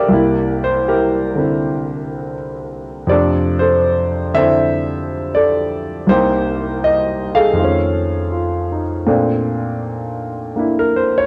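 Swung eighths roll along at a relaxed 80 BPM in 4/4 as a solo concert grand piano plays playful jazz in F major, moving from C7 and F6 through Cm7 and an altered F7. The piano sits up front with a clear, natural tone, deep bass and short sustain, spanning C2 to F5. At 9.1 seconds it settles onto Bbmaj9 as a new section begins, heard in a wet booth ambience on a home cassette recording cut from a longer piece.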